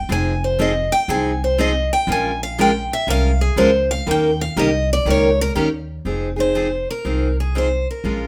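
A moderate studio reverb frames this fiery, bittersweet fragment of swung acoustic string jazz manouche, where a bright, boxy parlour steel-string guitar takes the up-front melody as a solo until 6.1 seconds, a second picked concert guitar with fresh strings and audible finger squeak supplies accompaniment over Fm7, Bbm7 and Eb7, and a woody, growly pizzicato upright bass adds a thumpy low end.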